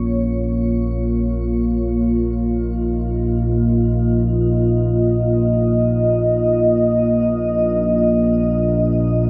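A dark analog pad sits up front, holding sustained chords built from detuned sawtooth and triangle tones with a sub octave beneath. Its slow attack and chorus give it a moody depth, and shimmer reverb adds a shimmering halo around it. Beneath it, an analog drone holds a low foundation, its vintage sawtooth and pulse-wave tone warbling and evolving through pulse-width modulation, mellowed by chorus and a long release. This dark ambient drone feels desolate and ominous, with both parts sounding together across the full 9.3 seconds of this fragment, which is cut from a longer piece. The whole space is soaked in a huge, wet ambient reverb with a 9.0-second decay, so the tones blur into one heavy haze.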